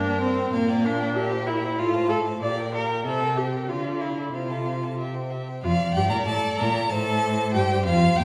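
The viola stands out most, its rich, vibrato-colored accompaniment sitting up front beside a focused cello bass in this urgent, dramatic passage from a quick classical-period string quartet movement in F major, at 94 BPM in a straight 2/4 and tuned to A4 = 435 Hz. Above them, one violin carries the melody with a smooth top while the second violin plays an even inner line, each part bowed by a single player from 0.0 to 8.2 s. The quartet is heard from further back in a wet recital hall, with a new section arriving at 5.6 s.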